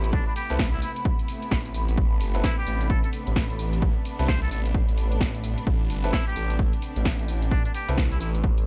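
Aggressive and swaggering, this bass house excerpt moves at 130 BPM in A minor with a swung 16th-note feel, sitting on an Amadd9 chord in a dark, small-room production. A thick, swirling detuned saw bass with phaser pumps up front alongside a punchy electronic kick, while a house kit's snare and tape-warm hats, lush bowed strings and an airy, breathy pad with chorus fill the space beneath. A nasal, straight-muted jazz trumpet with vibrato and scooped notes carries the melody through dub echo from 0.1 seconds, and a brilliant baby grand piano adds echoing stabs in the background.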